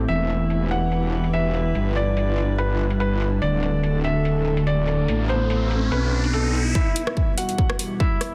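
A half-time 4/4 groove with a light swing on the sixteenths drives this menacing, heavy wobble dubstep passage, cut from a longer piece. Sitting low in the mix, the dubstep drum kit offers metallic, tape-tinged hi-hats and rim clicks, with a low-pass filter dulling both the hats and the snare. Up front, a saturated, aggressive FM wobble bass snarls through chorus and overdrive until 6.7 seconds. Behind it, an evolving wavetable pad holds detuned, bright sustained chords that pump with sidechain and bloom in its own reverb. A concert grand piano carries the melody in an intimate voice, its action noise audible and its long sustain trailing into dub echo. A riser enters at 4.6 seconds, and at 6.8 seconds a punchy, layered electronic kick drum arrives for the build-up, all held in a dense, heavily limited master with light reverb.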